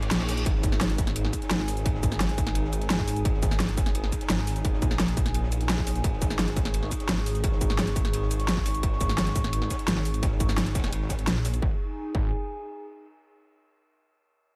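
A light reverb and tape-tinged grit color this tense, mechanical excerpt of dark technical drum and bass in straight 4/4. Up front, a snarling distorted saw bass growls low with a detuned, tube-saturated edge and a sidechain pump, while a warbly tape-like pad floats higher with a nostalgic, lo-fi, chorused haze that breathes to the same pump. A reverse cymbal sweeps in the background for the first 0.5 seconds, and the electronic kick drum enters at 0.5 seconds, distorted and layered. A dubstep drum kit sits forward with a huge snare, bright hi-hats and shaker, while a crunchy breakbeat kit lurks behind it with a dark, rolled-off sound, a high-tuned snare and gritty saturation in a small room. Near the end the drums drop away and the bass stops at 12.3 seconds, while the pad carries on until 13.0 seconds.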